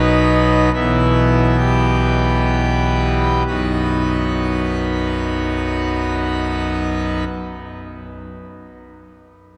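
A pipe organ on full organ, with its mixtures drawn, plays alone and up front, its brilliant, majestic tone set in a romantic voicing that spans from B1 to B4. This brief classical excerpt is chorale-like in 3/4 and B major, moving with a rubato feel somewhere between 59 and 77 BPM, and the tempo slows over the opening 3.5 seconds. The harmony rests on B, shifts to E minor over a B bass at 0.7 seconds, and returns to B at 3.5 seconds as a second section begins. A cathedral reverb with a long 6.5-second decay surrounds the sound, lending the reverent mood a sense of vast stone space. The organ sounds through to 7.2 seconds, where the excerpt is cut, leaving a majestic, devotional impression.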